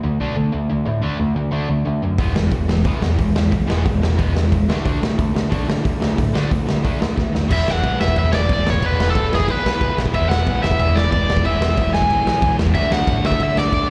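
Rebellious and energetic, this punk rock excerpt from a live gig opens with a double-tracked, distorted electric guitar riff over a growling picked bass with overdrive. A raw garage drum kit with a punchy kick and a gritty, saturated sound joins at 2.2 seconds, and after a drum fill at 7.2 seconds a crunchy, up-front lead guitar takes the melody at 7.5 seconds, carrying slapback echo and delay. The band comes through the venue's PA with the light reverb of a recital hall.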